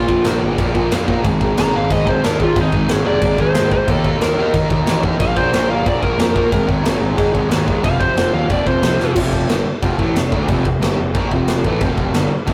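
A dark, distorted bluesy lead guitar solo opens this energetic, rowdy punk rock excerpt at 182 BPM over a bright, double-tracked overdriven semi-hollow guitar riff that sits up front, a growly fuzz-driven picked bass in the background, and a big, natural-sounding acoustic drum kit with a punchy kick, medium-tuned snare and bright crash cymbals, its fill at 9.0 seconds leading into a new section where the solo ends at 9.2 seconds and the band carries on through a rough, saturated rehearsal-room sound with light reverb.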